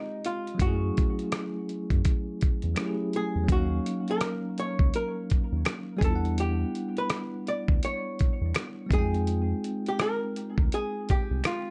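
A swung 83 BPM lo-fi hip hop groove in 4/4 comes from a gritty, compressed sampler-style drum kit up front, with a thumpy kick, hi-hat and rim click, joined at 0.6 s by a round, deep analog bass and at 1.3 s by very quiet finger snaps. Over this, a bell-like, bright tine electric piano carries the chords from Fm9 through Gbm9, Ebm9 and Em9, while a dark, clean hollow-body archtop guitar picks the melody through tape echo. This hazy, nostalgic excerpt has a dark, warm production bathed in light reverb.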